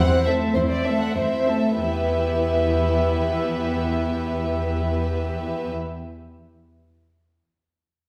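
Restless and stormy, this brief excerpt of a quick classical-period movement for string orchestra in E minor moves in 3/4 at 95 BPM with a rubato feel, slowing down over the first 1.8 seconds before the harmony settles from Am/E onto Em. A symphonic violin section carries the pure, floating melody, while a chamber violin section adds a smooth-topped second line, a dark viola section fills in the accompaniment, and an up-front cello section holds a low E as the bass; all four play sul tasto with soft attacks. A wet recital hall reverb places the ensemble further back in the room.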